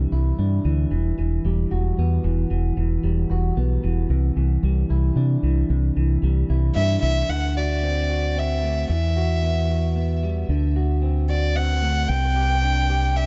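A bowed violin carries the melody in the high register from 6.8 seconds, its sul tasto tone soft in attack and airy, with light vibrato and a touch of tape echo, sitting close and intimate at the front of the mix. This is a brooding, cathartic post-rock passage in E minor at 113 BPM in a straight 3/4, tuned slightly low to A4 = 438 Hz. Underneath, an electric guitar at the edge of break-up picks compressed arpeggios throughout, its warm, slightly broken-up tone trailed by tape echo. A deep dub bass, fingered and round, plays up front with a punchy, amped directness. The harmony moves from Cadd9 and Emadd9 into D7 as the second section begins at 7.3 seconds, closing on Csus2. A small room and a dark, mellow production with a softened top end give this fragment of a longer piece a close, shadowed feel.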